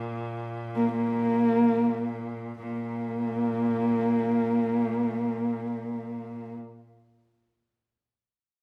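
Heard in a moderate recital-hall reverb, this brief cut from a longer Mongolian folk piece unfolds in free time with a vast, solemn mood: a single husky, woody horsehead fiddle carries the melody up front with vibrato and portamento over a quieter, earthy cello drone played with an airy bow, the pace slowing through the first 2.6 seconds before both parts stop at 6.6 seconds.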